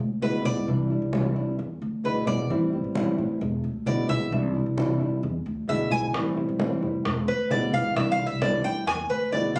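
Latin Cuban son in a guajira vein, this warm, nostalgic fragment moves at 132 BPM in a straight 4/4 over a cycle of E7, Cadd9 and Am7, with the bright, metallic double-strung Cuban tres up front playing a picked arpeggiated solo. A dark, full-bodied, thumb-plucked nylon-string guitar sits close beside it, while a woody, growly pizzicato upright bass anchors the low end from the very start and soft-handed, low-tuned congas with a thick-skinned tone thud distantly in the background. Tight, high-tuned bongos with a vintage, band-limited character join at 6.1 seconds, and the whole has the light club reverb and roomy feel of a phone recording.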